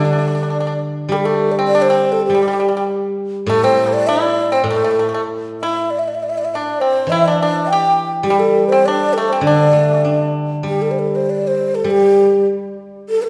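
Chinese traditional chamber music, this short excerpt from a longer piece feels festive and graceful, moving in a free, rubato two-beat pulse. A breathy low xiao carries the melody throughout, its bamboo tone soft in attack, shaded with vibrato and slightly unsteady, with lifted highs. A second low xiao, pure, mellow and very quiet, sounds distant as it adds a tongued, expressive second line, briefly at the opening and again from 6.5 to 10.3 seconds. The pipa, dry and percussive under fingerpicks, sits up front with its own second line until 10.3 seconds. Beneath them a steel-string zither, also fingerpicked and close, supplies a ringing, silvery accompaniment in the low register. A generous recital-hall reverb gives the ensemble the spacious air of a church or concert hall.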